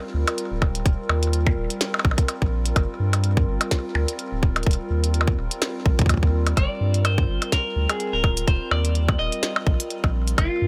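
Over a tight electronic kick and a glitchy kit of clicky hats, tiny snare, shaker and percussion blips swung on the sixteenths, this melancholic, cerebral IDM excerpt rests on a deep, round sub bass and a hollow, flute-like pad pumping with sidechain and chorus through Gm and Ebadd9 chords, until a bright, twangy clean electric guitar melody enters at 6.6 seconds with 12-bit sampler grit and tape echo, all in a dry, up-front mix.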